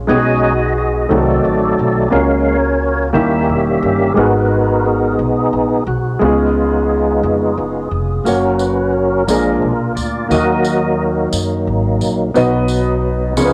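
A fat, lightly overdriven tonewheel organ sits up front and carries a solo throughout this jubilant, uplifting slow gospel fragment in 6/8 at 59 BPM in F# major, its percussive attack, key click and chorus vibrato turning through a slow rotary speaker. Beneath it, a clear concert grand piano with deep bass and short sustain plays accompaniment, while a woody, thumpy pizzicato upright bass on gut strings anchors the low end through chords such as B6, Cdim7 and G#m7. A jingly tambourine joins at 8.3 s as the harmony moves to F#, A#7 and D#m, and light reverb lends this cassette home recording a touch of studio ambience.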